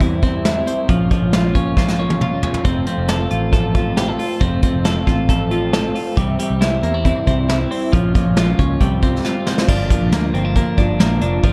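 Bright and breezy, this short cut of jangly indie pop moves at 136 BPM in F major, with a picked twelve-string electric guitar chiming out twangy arpeggios up front through slapback echo while a slightly broken-up electric guitar from a small old amp adds chorused accompaniment. A round, foam-muted fingered bass anchors the low end beneath a roomy brush kit with bright cymbals, which plays fills at 1.8 and 9.2 seconds before the harmony shifts to Gm7 at 9.7 seconds. Light reverb and a dark production give the whole a warm studio glow.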